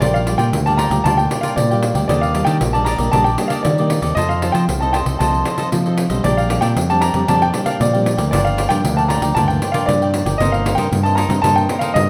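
Samba and choro in a playful, lively vein, this short cut from a longer piece sets a clear baby grand piano melody with short sustain over a crisp, picked cavaquinho and a dark, fingerpicked nylon-string guitar sitting in the background with audible finger squeak. A growling fingered electric bass, overdriven and up front, anchors the low end while a jingly pandeiro played with hard hands drives the groove. The ensemble sits in a moderate large studio reverb as the chords move from Gm7/Bb through Ebmaj7, F7 and Bb69 before turning to Gm7 and Cm7/G.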